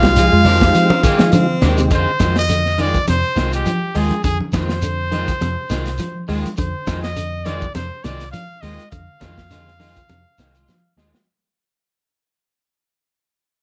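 A moderate club reverb surrounds this intense, hypnotic afrobeat excerpt at 103 BPM in F dorian, where a bright, up-front trumpet carries the melody over a gritty, saturated breakbeat kit with a punchy kick, a round, woody fretless bass with lush chorus, twangy, slightly broken-up electric guitars playing fingered arpeggios and picked stabs, and background congas and a grainy shekere, while a breathy trombone, a whispered baritone saxophone and a mellow, flute-like tonewheel organ with key click sound only in the opening 1.9 seconds before the music fades out toward a closing drum fill at 10.7 seconds.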